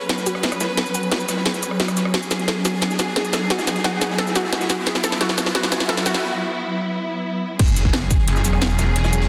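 Tense and mechanical, this dark technical drum and bass excerpt at 176 BPM builds over woody, distant bowed strings holding sustained chords, a lo-fi, filter-swept pluck arpeggio with chorus and delay, a background riser and impact, a very quiet gritty breakbeat kit, and an up-front drum and bass kit with a cracking snare and metallic hats, before a drum fill gives way to a break at 6.2 seconds and a drop at 7.6 seconds brings in a punchy electronic kick and a snarling, growling distorted saw bass, the mix sitting in a lush hall reverb under a dense, heavily limited master.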